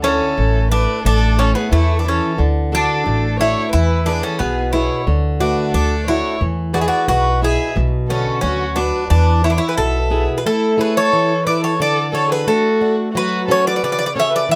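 A bright, metallic bouzouki with double strings, some of them octave-doubled, carries the melody from the first moment of this relaxed Greek folk excerpt in A major, moving at 89 BPM in a straight 2/4, with a dark, woody violin bowing a soft-attacked second line full of vibrato and portamento. A boxy, fresh-stringed plugged-in acoustic guitar picks swing-style accompaniment up front, while a thumpy pizzicato upright bass anchors the low end until 10.2 s, just before the music moves into a new section at 10.4 s. Close, detailed microphones and light reverb give the band an intimate, warm sound.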